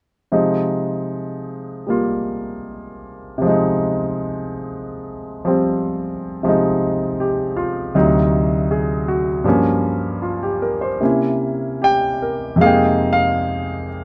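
Cool and late-night, this short solo jazz piece cut from a longer performance drifts in F minor at 78 BPM in 4/4, with a swung, rubato feel. A clear concert grand piano plays alone from 0.3 to 14.0 seconds, ranging from D2 to G5 with a deep bass and a natural, up-front presence, moving through Fm9/C, D7b9, Gm7b5 and C7b9 before settling on Fm11 at 12.6 seconds. Close, detailed microphones and light reverb keep the sound intimate.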